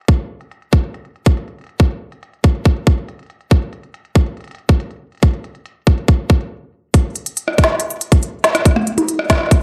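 Lightly reverberant and marked by lossy compression artefacts, this eerie, intricate IDM excerpt at 140 BPM in straight 4/4 sets a tight, overdriven electronic kick up front beside an organic electronic kit of woody snare, crisp hi-hats, rim clicks and toms, itself overdriven, low-pass filtered and touched with tape echo, both re-recorded in a large room, with a brief stop from 6.5 to 6.9 seconds before a new section begins.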